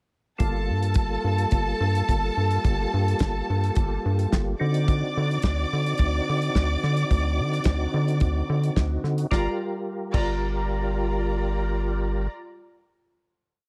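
A lightly reverberant studio sound frames this short, glamorous and danceable disco piece, with the dry 70s drum kit and the rubbery square-wave bass up front. The drums lay down a four-on-the-floor beat with a fat snare, tight kick, dark cymbals and open hats on the off-beats, while the bass bounces through octave lines with slides under a mellow, percussive tonewheel organ holding chords through chorus vibrato and a slow rotary speaker. A lush string section plays a second line of fast runs into held notes with expressive vibrato, and after the drums stop at 10.3 seconds the strings, organ and bass sustain the final chord until 12.3 seconds.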